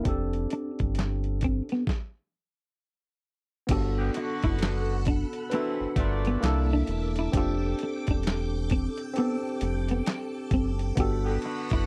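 Dry and close, with little reverb, this cut from a longer piece has the intimate sound of a 1970s studio session, setting a soulful, relaxed neo-soul and R&B groove with a gentle swing. A worn, slightly out-of-tune tine electric piano, lightly overdriven through a combo amp and washed in lush chorus, sits up front beside a round, deep analog bass and a gritty, compressed sampler-style drum kit. The kit's thumpy kick, medium-tuned snare, hi-hat, handclaps and crash sound overdriven and re-recorded in a small room. A clean, fingered electric guitar with its own lush chorus carries a second line. After a stop from 1.9 to 3.7 seconds, a swirling, bright string machine with phaser and ensemble chorus brings sustained chords, and from 4.0 seconds a distant, roomy horn section with light vibrato adds stabs as the harmony moves through Gmaj9, C13 and F6/9.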